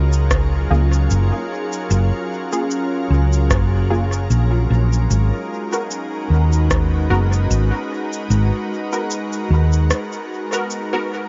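A round, dark hollow-body electric bass sits up front in this hazy ambient dub excerpt at 75 BPM in G# dorian, with a light 16th-note swing, until it drops out at 9.9 seconds for a short break. Beneath it, a tape-warm analog kick plays until 6.9 seconds, while overdriven electronic cabasa and rim click, re-recorded in a small room, carry dub echo. A calm, pure sine organ-like pad holds chorused, reverberant chords moving from F#maj9 to G#m9 at 5.1 seconds, and a muted, mellow sawtooth chord stab with a filter pluck sits in the background, shimmering with chorus and dub echo inside a soft digital ambience.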